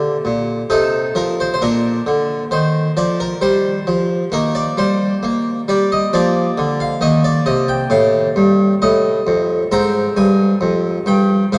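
A classical, baroque-style suite movement for solo harpsichord, this brief passage taken from a longer piece has a serene, radiant mood. It moves at a slow 66 BPM in 3/4 time, with a rubato feel that lets the pulse breathe. The harpsichord, an Italian-style instrument with two sets of strings, sounds plucked and full, sitting up front and spanning F2 to Bb5 across the full 11.6 seconds. The harmony centres on Bb, passing through F7/C and Eb before reaching an Fm chord at 9.7 seconds. A cathedral reverb with a long 4.8-second decay surrounds the instrument, and the dark production keeps the top end soft and rounded.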